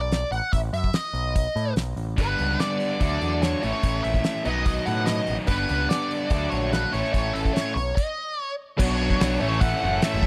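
Opening straight away, a dark, bluesy lead guitar with wah and distortion carries the melody over a growling, overdriven picked bass, with a dry 70s drum kit, fat in the snare and tight in the kick, coming in just after. This is confident, driving classic rock in 4/4 at 145 BPM, cut from a longer piece, moving through F#m7/A, B, G, D and A. At 2.2 seconds two rhythm guitars join on riffs, one bright, compressed and distorted, the other a hollow-body semi-hollow with a warm overdriven tone. The band hits a stop from 8.0 to 8.8 seconds, then turns toward Bm and A as a sludgy, double-tracked guitar enters alongside a full tonewheel organ with slow rotary and chorus vibrato holding sustained chords, both sitting very quietly in the mix. The sound is close and dry in the manner of a 1970s studio, with only a small room reverb, and the drums, bass and lead guitar placed up front.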